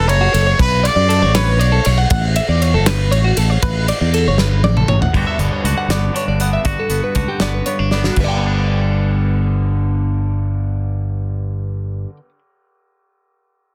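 Math rock with a midwest emo lilt, this bright, intricate passage in 6/8 opens on a clear, distant trumpet melody with light vibrato and digital delay that stops at 1.9 seconds, over warm twelve-string electric guitar arpeggios and an up-front fingered electric bass. A punchy modern studio drum kit with a pumping room sound drives the groove with a fill around 4.4 seconds, and at 5.1 seconds a twangy electric guitar joins with lush chorus on its accompaniment. The dry, dense, heavily limited mix keeps the twelve-string ringing until just before the twangy guitar closes this fragment cut from a longer piece.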